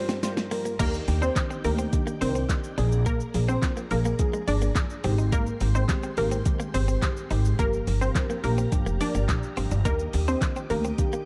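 A dark, warm production with light reverb and a digital ambience frames this carefree, upbeat dance-pop excerpt, cut from a longer piece. It opens on a drum fill from the smooth R&B kit, an electronic, up-front sound with a soft kick, fat snare, metallic hats, handclaps, shaker and crash cymbal, while the chord stab, organ-string pad and guitar already sound beneath it. At 0.8 seconds the drop arrives, and a woody, thumpy upright bass enters up front, its pizzicato steel strings pumping with the sidechain. Above it, a lush, punchy unison pluck carries the melody, its detuned sawtooth tone shaped by a filter sweep and trailed by digital delay. A deep, nasal chord stab with a sub octave and chorus pumps through the accompaniment, while a vintage, organ-like ensemble string pad holds mellow sustained chords in the background. A bright, clean, direct-recorded electric guitar picks a compressed riff with subtle chorus, also tucked behind, as the harmony moves through Gm7, Ebmaj7, Bb7 and Abmaj7.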